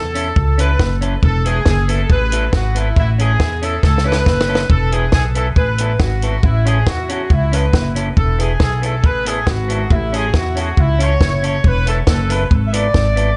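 A straight 4/4 ska groove, cut from a longer piece, bounces along cheerfully as a tight, up-front cocktail drum kit with a high-tuned snare and a woody, growly pizzicato upright bass drive alternating A and Esus4 chords, a twangy, slightly broken-up electric guitar through a small old amp adds lo-fi accompaniment, and a mellow, distant horn section carries the melody with tape echo, with a drum fill arriving at 3.8 seconds in a dry, joyful mix.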